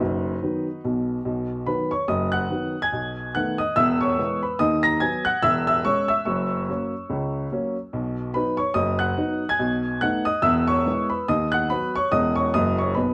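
A woody, vintage-toned upright piano plays alone from the first moment in this swinging, exuberant stride jazz excerpt, cut from a longer piece and moving at a lively, swung pace. The piano sits up front with a smooth, long sustain and ranges from deep bass to bright high notes. Moderate studio reverb gives it a sense of room as a nearly identical chord progression cycles twice in just over 13 seconds.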